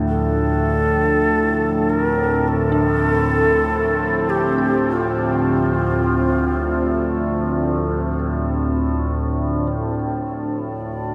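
A desolate, unsettling dark ambient drone, cut from a longer piece, opens on an up-front sawtooth drone with moving overtones, chorus and phaser, beneath a bright, detuned, ring-modulated pad that holds sustained chords until 9.7 seconds, while an airy, end-blown shakuhachi with delay carries a mellow melody up front and, from 2.7 seconds, a very quiet, eerie, inharmonic FM bell adds arpeggios, all set in a huge, dark reverberant space.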